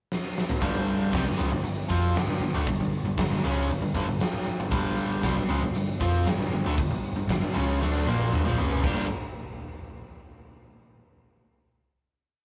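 A rough rehearsal-room recording with warm saturation and moderate reverb frames this short, driving and brooding classic rock piece, where a huge arena drum kit with bright cymbals, a fat snare and a punchy kick opens with a fill at 0.1 s, then a cranked stack guitar and a hollow-body semi-hollow guitar in the background play an overdriven power-chord riff from 0.6 s over a dark, round fingered electric bass that doubles it in driving eighth notes, before a second drum fill leads to a final chord at 8.8 s.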